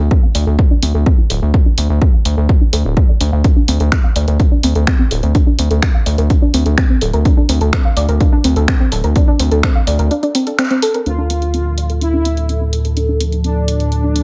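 A driving, dramatic stretch of melodic techno, cut from a longer piece, moves in a straight 4/4 pulse over a minor-key harmony that shifts from Dm to D7(no3) and back. From the start, a soft, round pluck spins arpeggios through analog chorus and delay, its filter sweeping, while a gritty, saturated synth bass sits up front with an aggressive, buzzing edge, both breathing with sidechain pumping. A heavy, layered electronic kick anchors the groove until 9.7 seconds, joined by a techno kit of finger snaps and hi-hats, the hats pumping, both drum parts carrying the air of a large room. After a short break marked by a band accent, at 11.1 seconds a bold, brassy analog synth lead enters with a fat, detuned tone, alongside a lush, airy unison pad treated with chorus and phaser under its own filter sweep. The mix stays dry and close, with the kick, bass and brass pushed forward.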